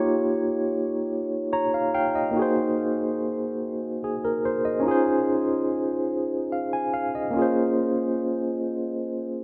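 A lush, wet hall reverb with a long 2.6-second tail surrounds this rough home demo, a short excerpt cut from a longer R&B piece. A barky tine electric piano, lightly overdriven through a combo amp and shimmering with fast tremolo, sits up front and carries the whole passage on its own from 0.0 to 9.4 seconds. The slow 6/8 lilt, played straight, gives the music a sensual, intimate mood. Between 1.1 and 2.4 seconds the piano slips in a brief fill. The harmony moves from Eb9 to Ab9 and settles on Dbmaj9 at 4.9 seconds.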